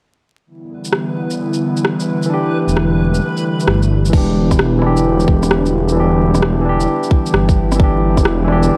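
Light reverb, a digital ambience and a bed of vinyl crackle frame this melancholic, ghostly future garage excerpt at 131 BPM in E minor, swung on the sixteenths and resting on an Em7 chord. An airy, breathy pad sits in the background with soft, chorused chords and a vintage sampler grit, pumping against the beat, while a reversed, granular texture blooms dreamily for a few seconds behind it. An organic electronic kit of crash cymbal, rim click and shaker carries a tape-tinged feel from a large room, and a bright, barky tine electric piano comes up front at 2.3 seconds, lightly overdriven through a combo amp with analog delay. Soon after, a menacing detuned saw bass arrives low and saturated, its filter swelling as it pumps. The tight electronic kick lands at 4.1 seconds to open the second section, where a filter sweep on the electric piano carries the passage toward its cut.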